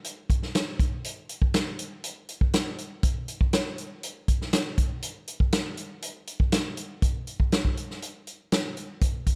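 A natural, up-front studio-room sound with light reverb carries this hypnotic, trippy rock excerpt at 120 BPM in a straight 4/4, built entirely on a vintage acoustic drum kit whose punchy kick, medium-tuned snare and hi-hat have a rolled-off top, playing from 0.0 to 9.4 seconds with a shift into a new section at 7.0 seconds.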